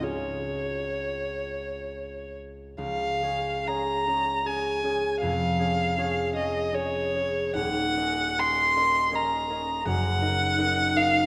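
A single violin, woody and warm with vibrato and portamento, sings a serene, warm romantic melody over a mellow, ringing fingerpicked concert harp, both close and present in a moderate scoring-stage reverb, in an unhurried, rubato 3/4 at 63-83 BPM in Db major, with a brief opening phrase giving way at 2.8 s to a new passage that moves from Db through Ebm7 in this short excerpt.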